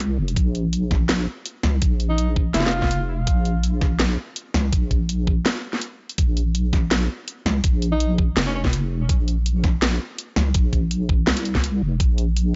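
A half-time drum and bass groove drives this tense, cinematic excerpt, with a knocking electronic kick entering at 0.4 seconds beside a kit of cracking snare and bright hats, all up front, and a brief break at 5.5 seconds. A deep, soft wobble bass with chorus fills the low end, while a clear, distant alto saxophone with vibrato and analog delay offers two short jazz-style phrases, first at 2.1 seconds. The dry, gritty recording has a dark, closed-in top end.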